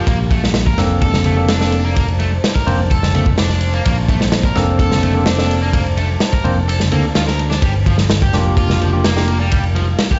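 Breakbeat with a funky, swaggering strut at 127 BPM in a straight 4/4, this cut from a longer piece sits on a Bbmaj9 chord before shifting to Gm7 at 7.6 seconds. A crunchy acoustic breakbeat kit sits up front, saturated and gritty with a tight kick, medium-tuned snare and dark ride cymbal, while very quiet congas add thick-skinned, hard-handed percussion underneath. A punchy, direct picked electric bass anchors the low end, and a bright, double-tracked overdriven electric guitar riff with delay runs throughout. Barky tine electric piano stabs, clean through a combo amp but roughened by vintage 12-bit sampler grit and delay, punctuate the groove, while a deep, moody sawtooth pad with a sub octave holds sustained chords in the background with chorus and sidechain pumping. The kick drops out between 6.7 and 7.6 seconds, and the whole mix sounds as if played on a big sound system in a bare room, bathed in large studio reverb with a rolled-off, dusky top end.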